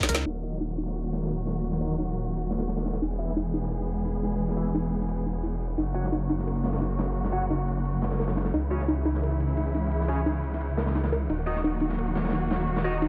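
A snarling, detuned saw bass growls up front through tube saturation and sidechain pumping, anchoring this dark, futuristic drum and bass excerpt as bowed studio strings with vibrato and portamento hold sustained chords over a progression moving from Ebm through E, Gb and Dbm. An overdriven electronic kit with a woody snare, bright hats and tambourine drives the groove alongside a gritty, saturated acoustic breakbeat kit with dark ride cymbals. A warbling, lo-fi pluck plays chorused, delayed arpeggios, and a bright, double-tracked distorted guitar adds picked stabs from 0.4 seconds, both under a filter sweep in a small, lightly reverberant room.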